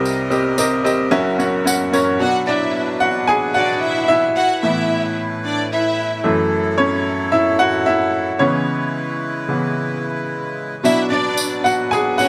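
Piano-driven pop in B dorian at 111 BPM, this dramatic, earnest fragment of a longer piece centers on a bright, woody upright piano with short sustain, which takes a solo from 2.2 seconds while a reedy, close-miked accordion holds full, slowly beating chords underneath. A lush, bowed violin section with expressive vibrato adds a second line from 2.2 to 6.2 seconds and returns at 10.8 seconds alongside a jingly tambourine, which also opens the passage. A moderate large-studio reverb wraps the sound, and the harmony moves through chords such as Bm, Asus2, F#m7 and C#m7.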